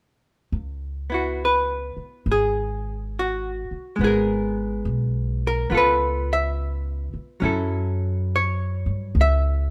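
A woody, growly pizzicato upright bass opens this smoky, intimate jazz ballad excerpt at 0.5 s, joined at 1.1 s by a dark, clean, picked hollow-body archtop guitar, both up front in a moderate echo-chamber reverb, over a slow 69 BPM swing in C# minor moving from C#m7 through G#madd9 and C#7alt to F#m7.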